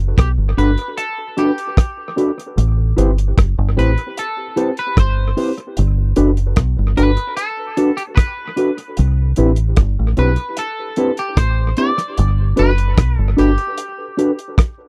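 A smooth 75 BPM lovers rock reggae groove in G major rolls along in a straight 4/4, with a damped 70s drum kit of tight kick, hi-hat and rim click sitting up front with a dark, rolled-off top and a touch of tape echo, while a deep dub fingered bass, round, punchy and foam-muted, anchors the low end from the start. A mellow electric guitar supplies clean, fingered stabs through analog chorus, and a mellow tine electric piano adds clean accompaniment through its built-in speakers with tape echo, moving through Gmaj7, Am7 and Cmaj7. Above them, a bright, twangy picked electric guitar carries the sweet, smooth melody, bathed in lush chorus and tape echo, all captured in a dry, close 1970s-style studio sound in this short cut from a longer piece.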